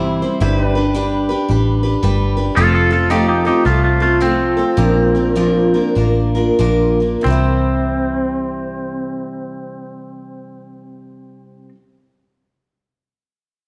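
A swung eighth-note feel in 4/4 carries this nostalgic, down-home country excerpt, moving between 89 and 112 BPM in C mixolydian and easing into a slowdown from 2.6 s until the second section arrives at 7.2 s. A bright dreadnought acoustic guitar, picked with audible finger squeak, plays the accompaniment up front throughout. A round, foam-muted vintage electric bass anchors the low end beneath it. The pedal steel opens with clean sustained chords played with fingerpicks and slide, shaped by volume swells, over a G chord before falling away at 2.6 s. At that moment a twangy, compressed electric guitar takes up a second line, its tape echo trailing each picked note over the chords moving from F through Bb to C. A wet recital-hall reverb and dark, warm production wrap the whole performance in a cozy, old-time glow.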